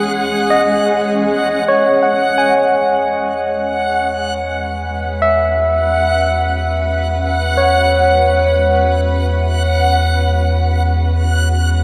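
Moving at a slow, straight 51 BPM in 4/4, this weightless, serene ambient fragment in E major is cut from a longer piece and sits in a vast, echoing space with a huge reverb tail. A shimmering, detuned pad with an octave-up sheen holds sustained chords across the whole span, treated with chorus and its own reverb, and fades in from 1.7 s onward. Above it, a barky, clean tine electric piano plays arpeggios high in its range, trailed by a diffuse ambient delay. A reversed, swelling texture hovers on a single bright high note with granular, dreamy detuning, while a nasal, organ-like drone lingers barely audibly between 0.3 and 1.8 s. At 1.7 s a round, deep analog bass enters on a low E and stays up front to the end, grounding the ethereal upper layers over a D#m/E harmony.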